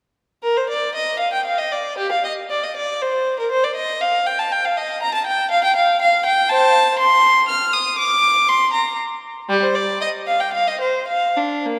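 A rich, reedy solo violin with a gut-string tone and light period-style vibrato plays up front in this serene, dance-like excerpt from a baroque-style suite movement for unaccompanied violin in Bb major and 3/4, moving with a rubato feel at around 107-123 BPM from 0.4 to 11.8 seconds across a range from G3 to F6, bathed in a wet church reverb.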